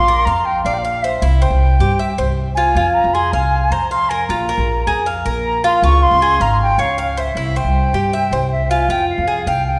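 An airy, distant concert flute sings a nostalgic, expressive melody with vibrato over a bright, metallic Cuban tres picking arpeggios on its double strings and a woody, growly pizzicato upright bass, both up front, in this danceable Cuban son and guajira excerpt in F minor at 156 BPM, bathed in the wet reverb of a church or concert hall.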